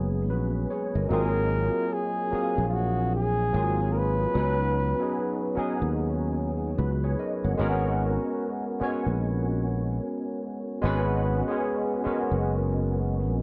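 A breathy, whispered flugelhorn with light vibrato and scooped notes plays a brief jazz-style solo from 1.1 to 5.6 seconds over a barky, lightly overdriven tine electric piano with ensemble chorus and a growly, punchy fretless electric bass, in this introspective, late-night R&B excerpt at 74 BPM in G# dorian, its swung sixteenths captured in a dry, close 1970s-style studio sound with light reverb.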